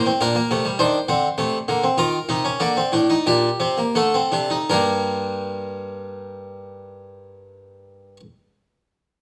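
A baroque-style three-part fugue for solo harpsichord in G minor, this brief cut from a longer piece carries a serious, solemn mood in 3/4, its tempo ranging from 77 to 105 BPM and slowing down over the first 4.7 seconds. The Flemish-style harpsichord sits up front with a plucked, full tone from two sets of strings, spanning G2 to D5 and playing until 8.2 seconds through a progression from Gm/Bb and Cm to Eb5, Gm and D5 before resolving on Gm at 4.7 seconds. A moderate stone room reverb lends the sound a resonant, solemn space.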